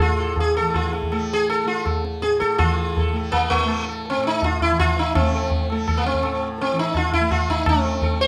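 The recording sits in a light reverb, giving this short cut from a longer Hindustani classical performance a gentle sense of space. The mood is solemn and introspective, set in a seven-beat cycle with a straight feel that gradually speeds up across the whole passage. Up front, the plectrum-plucked sitar carries the melody, its sympathetic strings shimmering beneath each note and a slapback echo trailing the phrases. Behind it, a bright, softly plucked tanpura holds a buzzing drone. The low-tuned tabla joins at 0.4 seconds, close and dry with a short ring. At 2.6 seconds the music moves into a new section, which carries on until the passage breaks off.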